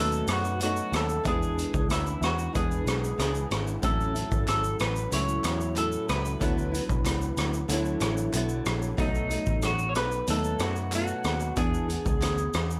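A slightly broken-up electric guitar carries the hazy, laid-back indie pop melody from the start, its compressed lo-fi tone bathed in lush chorus, slapback echo and plate reverb. Beneath it sit a fingerpicked flamenco guitar with chorus and vibrato, warbling square- and sawtooth-wave synth keys in the background, a dark, round, foam-muted electric bass, and an up-front garage kit with a boomy, gritty kick, rolled-off top, hi-hat, rim click and shaker. The bedroom-pop groove moves through B7, E7, A6 and D69 in a moderate studio room, and a very quiet, crisp group handclap joins at 4.5 seconds in this passage cut from a longer piece.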